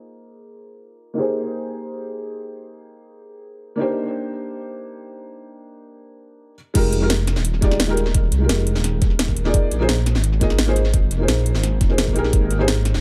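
A filtered, echo-heavy mix with light reverb frames this dreamy, soulful liquid drum and bass passage, cut from a longer piece, which opens on a felt-muted upright piano whose mellow, boxy chords carry tape echo and audible action noise through a filter sweep. At 6.8 seconds the drop arrives: a deep, rumbling detuned saw bass with saturated, beating sustain sits up front alongside a knocking electronic kick and a tape-warm kit of cracking snare, metallic hats and crash cymbal. The piano falls away at 12.7 seconds, and the jazzy extended chords glide from Fm11 back toward a closing Abmaj7sus2.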